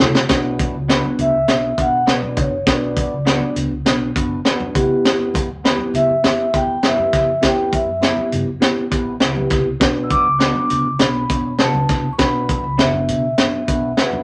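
Driving and urgent, this uptempo 1960s-style soul passage moves at 101 BPM in B minor, opening with fills on the tine electric piano and a crunchy breakbeat drum kit before settling over chords that shift from Bm to Em and back to Bm. The saturated, gritty drums sit up front with a high-tuned snare and tight kick, while a woody pizzicato upright bass, the clean phaser-treated electric piano and soft-handed congas tucked in the background fill out the groove. Twangy, slightly broken-up guitar stabs from a small old amp join in the background at 0.9 seconds, and a mellow, ringing vibraphone with soft mallets and slow motor vibrato carries the melody from 1.2 seconds, set in a moderate small-room reverb.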